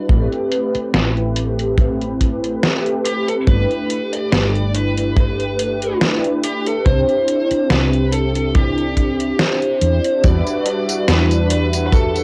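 A woozy, nostalgic vaporwave fragment, cut from a longer piece, with the hazy character of a home cassette recording in a small, moderately reverberant room. At 71 BPM in 4/4 with a light sixteenth-note swing, a mellow synth brass pad carries the harmony through Am9, G69 and C before settling on Em9 at 10.2 seconds. The pad is detuned, dark and sustained, with a filter sweep, analog chorus, tape echo and plate reverb. Beneath it, a woody fretless electric bass sounds growly and hollow-bodied. A tight acoustic kick sits up front beside a detuned 8-bit drum machine whose muffled hi-hat, snare and tambourine have a sampler-style, tape-warmed character. From 3.1 seconds a bluesy overdriven lead guitar enters with a picked, distorted melody, its tone clouded further by cassette wobble and tape echo.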